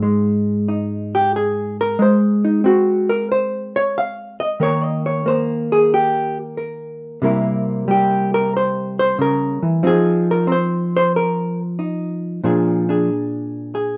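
A hollow-body jazz guitar plays alone from the first moment, its clean, dark electric tone sitting up front as it moves through a playful, sophisticated solo jazz passage at 92 BPM with a swung feel. Fingered across a span from Ab2 to F5, the line travels over chords from Ab through Eb5, C7 and F5 to Bb7 at 12.4 seconds, under a light reverb in this short cut from a longer piece.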